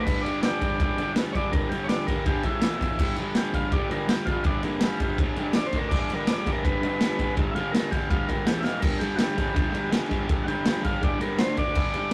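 A buzzy, clean vintage combo organ takes the solo across this 12.1-second cut from a rowdy, raw garage rock tune, moving at 164 BPM in a straight 4/4 over a chord pattern that circles through G, E and D. Up front in the mix, a double-tracked, overdriven electric guitar picks a crunchy riff, while a saturated, gritty acoustic drum kit with a boomy kick, dark cymbals, a rolled-off top and a pumping small-room sound drives the band and drops a fill at 8.7 seconds. The whole take has a rough rehearsal-room character with tube saturation and a wet studio reverb.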